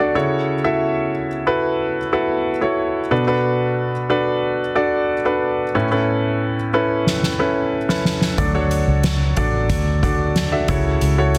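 A clear, intimate grand piano with audible action noise opens this uplifting piano-driven pop excerpt in D major at 91 BPM, soft-mallet drums with a fat snare and boomy kick enter with a fill at 7.1 seconds, and a dark, round, foam-muted fingered electric bass joins at 8.4 seconds, all set in a moderate large-studio reverb under a dense, heavily limited modern master.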